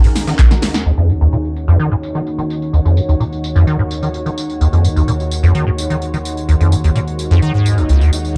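A lush, detuned sawtooth pad and a squelchy, resonant square-wave acid bass open this driving, hypnotic acid house excerpt, both pumping against the beat, alongside a punchy, overdriven analog drum machine with metallic hats and a moody sub-octave ambient pad in the background, while a very quiet acoustic arena kit sits beneath, an up-front overdriven kick lands once at 0.4 s during a short drum fill, filter sweeps sweep through the drums, bass and pad from 0.9 s, and an electronic swell arrives at 7.6 s, all within a dark production touched by light reverb.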